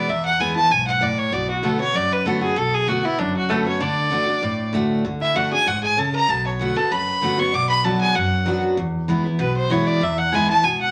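A straight 4/4 pulse at 193 BPM drives this lonesome, rustic bluegrass excerpt in B dorian, where an intense bowed fiddle with light vibrato carries the melody up front over a bright, full-bodied picked dreadnought with audible finger squeak, a woody, thumpy pizzicato upright bass with gut strings sits in the background, and from 3.2 s a nasal, metallic lap resonator guitar, played with slide and fingerpicks, adds a second line, the whole recording set in a club reverb under a layer of vinyl crackle.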